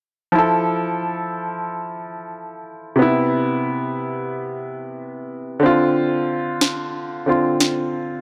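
A clear grand piano opens this short dancehall passage at 0.3 seconds, setting a hypnotic, sultry mood at 91 BPM in a straight 4/4. Sitting up front and present in the mix, the piano carries the accompaniment across a middle register, moving from Fmaj7 to Cmaj7 and then Dm7. A moderate plate reverb gives the sound a lingering tail. Near the close, at 6.6 seconds, a sharp electronic snare drum enters, produced and placed up front, before dropping out at 7.8 seconds. The piece is tuned slightly low, to A4 = 439 Hz, and this fragment is cut from a longer work.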